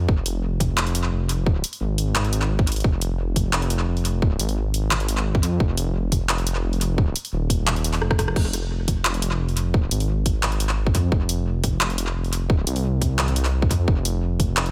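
A half-time groove at 174 BPM in 4/4 drives this heavy, dark drum and bass excerpt in F minor, built on an electronic kick that sits up front with a hard-clipped punch and a touch of studio reverb. A layered, overdriven drum kit of crash cymbal, handclaps, bright hi-hats, rim clicks and toms carries tape echo and studio reverb, and it breaks into a fill from 8.0 to 8.4 seconds before the drop restarts. Underneath, a deep, rumbling detuned saw bass with a sine layer holds sustained, saturated notes with a fast attack and a beating quality, in a dry but echo-heavy mix.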